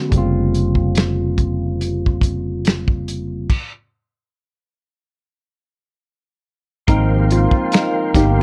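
A lightly swung 4/4 neo-soul R&B groove with a smooth, late-night mood sets a dry, punchy soul kit of kick, fat snare, hi-hat, finger snaps and dark crash under a round fretless bass and a barky, phased tine electric piano up front, falls into a stop at 3.5 s, then returns at 6.9 s as the electric piano takes a solo over a soft, flute-like organ on slow rotary speaker, a hollow archtop guitar in the background and cup-muted trombone stabs with tape echo, all on worn cassette tape with a warbly pitch drift and light reverb.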